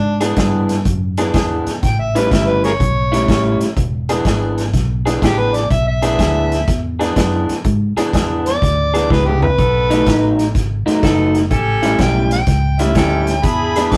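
A rough rehearsal-room recording with a small room's moderate reverb carries this rollicking, soulful electric blues shuffle in E mixolydian at 124 BPM, a piece cut from a longer performance. Up front, an overdriven harmonica leads with gritty, amplified tone, light vibrato, tongue slaps and scooped notes, over a round, foam-muted bass, a bright, slightly broken-up electric guitar riff through a small old amp, and a vintage drum kit with a punchy kick and rolled-off top. After a drum fill, a clear saxophone section adds smooth-topped stabs from 9.6 seconds as the chords move to B7.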